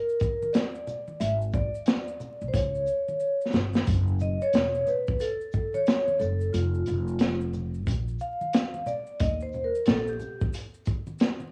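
A ringing, metallic vibraphone, played with medium mallets and a slow motor vibrato, carries a solo through this mellow, nocturnal jazz-hop fragment cut from a longer piece, its tone softened by cassette tape. A crunchy, gritty, saturated breakbeat kit with a punchy kick, medium-tuned snare, shaker and a dark, rolled-off top swings on the 16ths and drops a fill at 3.2 seconds, while pizzicato upright bass enters at 1.2 seconds with a woody, thumpy tone. Quiet maracas and congas sit low in the mix, and vinyl crackle, light small-room reverb and a homemade cassette character give the whole track a dusty, late-night intimacy.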